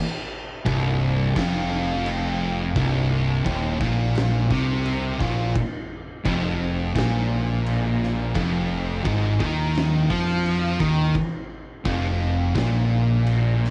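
A straight 4/4 pulse at 86 BPM drives this brooding, hypnotic fragment of stoner and doom metal, with the whole band arriving together at 0.7 s and playing through to 13.7 s. An oversized, low-tuned acoustic drum kit sits in the background with a boomy kick, fat snare and dark crash cymbals, its big-room sound muffled, saturated and lo-fi with a rolled-off top. A bright, double-tracked overdriven guitar plays the riff, while two thick fuzz guitars play the riff alongside it, one with added distortion in the background and the other very quiet. A growly fingered electric bass with fuzz and overdrive, both direct and amped, anchors the low end. The harmony rests on C minor before shifting to an F power chord at 5.6 s, all wrapped in a dim studio ambience.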